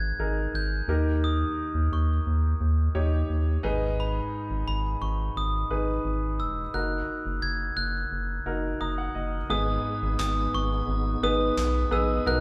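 Piano-driven pop in G# minor at 87 BPM with a bittersweet, earnest mood, where a bell-like glockenspiel struck with soft plastic mallets carries the melody over intimate, up-front grand piano with audible action noise and a deep, round analog bass, until a piano fill at 8.5 seconds leads to a lightly overdriven tonewheel organ with chorus vibrato and slow rotary speaker entering at 9.5 seconds and hollow group handclaps joining at 10.2 seconds, all played live in one room with a wet, large studio reverb.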